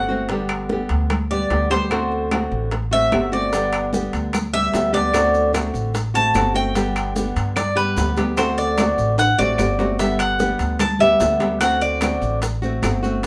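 A moderate studio reverb gives this relaxed, easygoing clip of Cuban son in the guajira style a sense of room while keeping the lead instruments close. The Cuban tres carries the solo, its picked double strings ringing bright and metallic with some octave-doubled courses, playing arpeggios up front until it drops out at 12.4 seconds. Beside it, a full-bodied nylon-string guitar fingerpicks a classical-style accompaniment with audible finger squeak, while a dark, thumpy gut-string upright bass plucks underneath as the harmony sways between G and D7. Thin-skinned, high-tuned congas with a vintage, band-limited tone and woody claves sit in the background, while tight, close and very quiet bongos and ringing metal-shell timbales with a compressed, saturated edge complete the percussion. Grainy, mellow maracas join at 3.5 seconds, and a drum fill at 9.2 seconds briefly stirs the steady groove.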